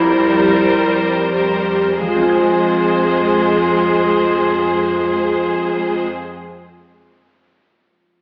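A mellow, distant clarinet carries a second line through this solemn, yearning classical excerpt in F minor, played rubato at 46 BPM in 3/4. A studio violin section adds another expressive second line with soft-attack portamento, while a lush symphonic violin section holds the melody, a rich viola section accompanies, a smooth cello section supplies the bass and a ringing, fingerpicked concert harp plays arpeggios in the background until 6.4 seconds. The whole recording sits in scoring-stage reverb, heard from further back in the room with an AM radio sound, as the tempo slows over the first 2.0 seconds and C7/F resolves to Fm.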